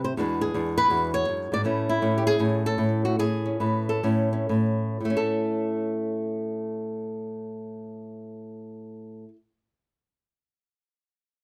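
Sophisticated and relaxed, this short solo jazz piece, cut from a longer performance, moves at a swung 114-164 BPM in A major, slowing down between 1.6 and 5.0 seconds. A lone fingerpicked flamenco guitar, acoustic and up front, plays throughout, drifting from an E9 to an Amaj9 before settling on A as a new section begins at 5.0 seconds. Close, detailed miking with little reverb brings out the guitar's warm tone.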